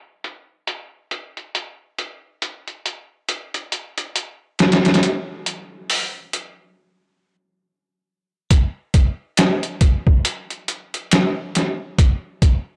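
A slow, swung 4/4 groove carries this melancholic, hypnotic trip hop fragment, played entirely by a sampler-style drum kit of kick, snare and hi-hat that comes in at 0.2 seconds and sits up front. The kit sounds pitched down, muffled and compressed, with a thumpy kick, a medium-tuned snare and a coat of overdrive, as if re-recorded in a small room, and the whole piece carries a dry, gritty, filtered hardware character with light reverb. The beat drops out from 6.8 to 8.5 seconds, then returns for a new section that runs to the cut at 12.7 seconds.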